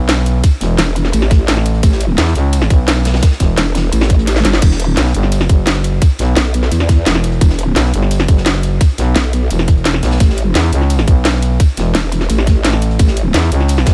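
A straight 4/4 pulse at 172 BPM drives this short, dark and futuristic cut of technical drum and bass, with a tight, up-front electronic kick arriving at 0.4 s beneath a layered electronic kit of cracking snare, metallic hats, crash and ride, plus a very quiet, gritty, saturated breakbeat kit with a rolled-off top, and a brief drum fill at 4.3 s. Two growling basses share the E1 to E2 range up front: a thick FM bass from the start, and an aggressive, wobbling growl bass with a formant filter and chorus that enters at 0.8 s. The harmony moves from A5 to Em and back to A in a dry mix with little reverb.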